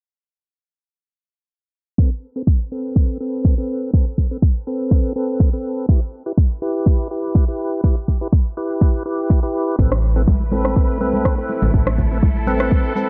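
Afro house cut from a longer piece, driving and earthy, where lightly overdriven tonewheel organ stabs with slow rotary swirl, key click and tape echo ride a filter sweep over a deep, up-front electronic kick from 2.0 seconds, before woody, round FM bass, distant lush bowed strings, high-tuned ringing congas, a grainy, very quiet tube shaker and an electronic rim click join at about 9.8 seconds, with the organ, strings and bass pumping to the kick in a small room.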